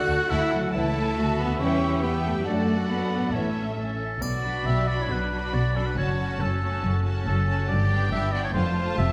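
A lush orchestral sound, bathed in wet scoring-stage reverb, opens this triumphant, adventurous stretch of heroic film score. A distant, expressive violin section carries the melody over a rich second violin line, bright viola accompaniment, a focused cello section, an up-front double bass section and ringing fingerpicked harp arpeggios. A clear oboe adds a second line throughout. A mellow French horn section and a dark, very quiet trombone section fill the opening until about 3.5 s, while an airy flute and a background clarinet continue until about 4 s. A small-room triangle enters at 4.2 s as the music moves into a new section.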